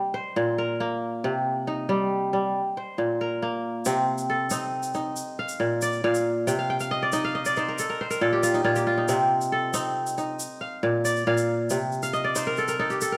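A solo kora opens this piece of West African string music, its ringing, fingerpicked arpeggios spanning Bb2 to G5 in a hypnotic, flowing pattern. The tune sits in C dorian at 92 BPM in a straight 12/8, with the harmony moving between Bbsus2, Cm and Bb. At 3.9 seconds a grainy egg shaker joins as a quiet percussion layer set well beneath the crisp, up-front kora. The kora adds fills from 6.5 to 9.1 seconds, across a brief passage where the chords drop away, and again from 12.0 seconds to the close. The sound is close and detailed, and a moderate recital-hall reverb gives the strings a gentle bloom in this short section cut from a longer performance.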